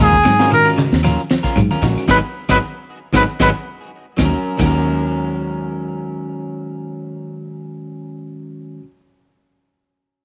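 Afrobeat in Eb minor at 114 BPM with a defiant, intense edge, this short cut opens on a clear, lightly vibrato trumpet solo up front over two slightly broken-up picked electric guitars (one arpeggiating in the background, the other playing tape-echoed stabs), a round, foam-muted fingered bass, a crunchy, saturated breakbeat kit with a punchy kick and high-tuned snare, grainy shekere, woody claves, thin-skinned congas and a barky, overdriven tine electric piano, with a band accent from 2.1 seconds and a drum fill before the drums, percussion and arpeggio guitar drop out at 4.7 seconds, leaving bass, stabs and electric piano over Ebm7 in a small, lightly reverberant room.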